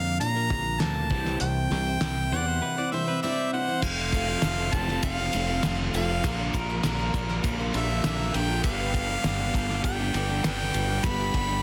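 Hopeful and warm, this folk rock and heartland rock excerpt is led by a clear, punchy harmonica melody up front, over a shimmering, octave-doubled twelve-string acoustic guitar and a crunchy, double-tracked overdriven guitar riff set in the background, with a growly fingered electric bass. A cloth-damped, thuddy drum kit with a fat snare, tight kick and dark cymbals brings a muffled, lo-fi grit, while a bright, twangy pedal steel adds a second line from 2.3 to 7.6 seconds and a grainy egg shaker enters very quietly at 3.8 seconds. Light reverb and small room ambience frame a dense, heavily limited modern master as the chords move from Bb and C to F before settling on G.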